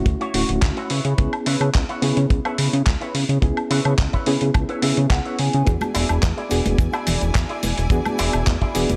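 Nu-disco at 107 BPM with a feel-good, groovy mood, built on a dry, tight kick drum up front, a fat, detuned sawtooth analog bass that pumps to the sidechain, and a gritty, compressed sampler-style kit of handclaps, hi-hat and woodblock. A reedy, worn, slightly out-of-tune electric piano with fast tremolo and tape echo carries a filter sweep throughout, while a bright, twangy envelope-filtered electric guitar riff with analog chorus and 12-bit grit plays a clean fill from 4.5 to 5.7 seconds. At 5.7 seconds the harmony moves from Dmaj9 and C#m7 to E7 as lush, bowed symphonic strings and hard-handed cabasa and congas join in the background of a small room.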